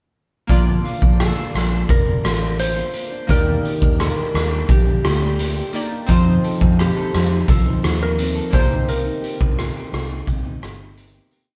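A dreamy, hazy indie bedroom-pop piece at 86 BPM in Bb major opens at 0.5 s with a raw garage drum kit playing a soft rhythm-box pattern around a punchy kick, a round, foam-muted fingered bass line, a clean electric guitar's fingerpicked roll with warbly pitch drift in the background, and glossy chorused retro synth keys holding chords with grace notes; at 1.2 s a compressed, clean lap steel enters with slide call phrases over a Bb, Ebmaj7, F7, Cm7 progression, the band playing live in a moderate stone room reverb before fading out from 8.9 s.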